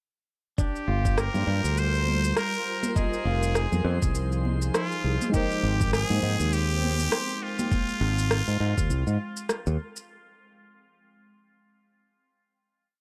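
An overdriven, thumpy electronic kick and a layered shaker and rim click set a light lounge beat at 101 BPM with a 16th-note swing, joined by distant, high-tuned congas and a growly, syncopated fingered bass riff, while a nasal, raspy trumpet with a straight mute plays call-phrase motifs through dub echo over a twangy clean electric guitar arpeggio, an ethereal pad with phaser and ensemble chorus, a very quiet glassy texture of drifting overtones, and, from 5.3 s, a soft, round FM electric piano with held chords, together forming a relaxed, warm sunset chillout piece in F minor that closes at 10.1 s.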